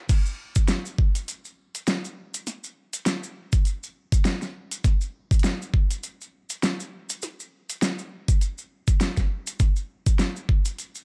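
Playful and swaggering, this glitch hop excerpt catches a drop from a longer piece, riding a swung sixteenth-note feel in 4/4. An overdriven electronic kick drum sits up front with a layered, knocking punch, running from 0.1 to 10.6 seconds. Beside it, an overdriven dubstep drum kit brings crash cymbal, hi-hat and a huge snare, also layered and up front, with its hats, snare and cymbals thinned by high-pass filtering. Maracas add a grainy, mellow acoustic shake from a small room, sitting low beneath the electronic drums. The whole clip has a dry, gritty hardware character set in a digital ambience, keeping the drop lean and hard-edged.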